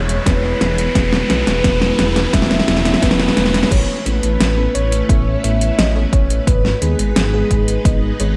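A riser and a drum fill open this nostalgic, uplifting synthwave excerpt at 87 BPM, as a dark detuned saw bass rumbles up front beneath lush string-machine chords, dreamy FM electric piano stabs with chorus, tremolo and delay, and a round, octave-layered synth lead singing the melody with vibrato, chorus, slapback echo and delay. The punchy overdriven electronic kick pairs with the pop kit, whose fat snare, metallic hats and crash sit forward in the mix. Everything is bathed in a big concert-hall reverb as the harmony moves from E to Aadd9 at 3.7 seconds and on to G#m at 6.5 seconds.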